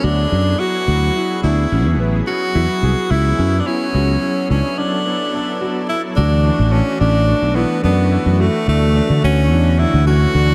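An odd 11/8 metre with a straight feel drives this intricate, bright progressive instrumental, a short excerpt cut from a longer piece. The fretless electric bass sits up front with a growly, direct and amped tone, sustaining its low line throughout. A close-miked tenor saxophone carries the melody, clear and soloistic in a pop style and trailed by analog delay. Behind it, a grand piano plays arpeggios with an intimate, natural sound, its action noise audible beneath subtle chorus and delay. A smooth, detuned sawtooth pad with a soft attack holds sustained chords in the background, shimmering with chorus and tremolo. The harmony moves from D through Amaj7, C#m7 and Bm7, a break arrives at 4.6 seconds, and a new section from 6.2 seconds rests on D6 before settling on Dmaj9, the mix soaked in a huge ambient reverb that lends it a dreamy haze.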